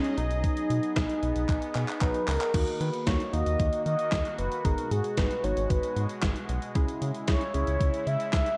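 A dark, light-reverbed production frames this short synth-pop excerpt, cut from a longer piece, with a cool, driving mood at 114 BPM in a straight 4/4. Up front sits a gated 80s digital drum machine with a thumpy kick, a gated-reverb snare, handclaps, hi-hat and crash cymbal, its tape-toned sampler sound re-recorded in a large room, and a drum fill arrives between 1.5 and 2.5 seconds. A round, deep analog bass joins at 0.2 seconds, its blend of sawtooth, sine and triangle tones evolving under a fast attack and long sustain. Above it, chorused analog keys built from detuned square and sawtooth waves give mellow, decaying accompaniment with a filter sweep, while a bright, sweeping resonant pad holds sustained chords with a soft attack and filter swell. The melody belongs to a horn-like vintage synth lead, warbling with vibrato, chorus and analog delay, set over a progression from B6 to D#m, G#m7 and C#m.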